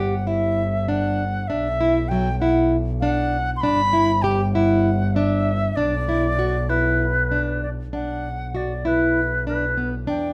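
Restless and pensive, this fragment of contemporary chamber music in B minor moves in a straight 7/8 at 196 BPM counted in eighths, its harmony shifting between G and B minor, with a change of section at 7.9 s. A bright, reedy wooden flute carries the melody with vibrato and a crisp attack over fingerpicked classical nylon-string guitar arpeggios, whose warmth is marked by finger squeak, while one player on muted double bass, bowed con sordino, adds a dark, veiled, nasal bass line with light vibrato. All three instruments sit up front in a wet studio reverb.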